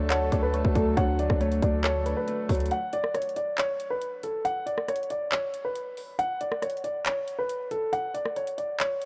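Menacing and hard-hitting, this half-time trap excerpt is cut from a longer hip hop piece and opens over a D chord. A mellow, intimate grand piano carries the melody throughout, its audible action noise giving it a vintage closeness, softened by a low-pass filter and placed up front. For the first 2.7 seconds it is joined by a clear concert grand with deep bass playing filtered accompaniment, a very quiet bowed string section with woody vibrato and a lush, smooth top, a soft, round pluck in the background with chorus and delay, and a growling, buzzy 808-style bass on D. At 2.7 seconds the chord drops away into a break, leaving the lead piano and the electronic trap kit to carry on to the end. The up-front drums bring a hard-clipped kick, metallic hi-hats, handclaps and rim clicks, roughened by gritty 12-bit sampler character, all sitting in light reverb with a small room ambience.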